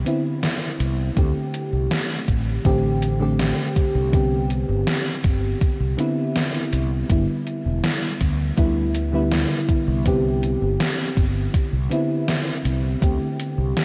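A straight 4/4 pulse of gated, overdriven 80s drum-machine hi-hat and snare with 12-bit sampler grit, joined at 1.2 s by a thumpy electronic kick, carries this faded, nostalgic vaporwave fragment, where a soft, warbling FM electric piano bathed in lush chorus and delay drifts through Cmaj9, D7sus4 and G6 over a round, dark fretless bass, inside a dreamy mix soaked in huge ambient reverb and cassette-tape haze.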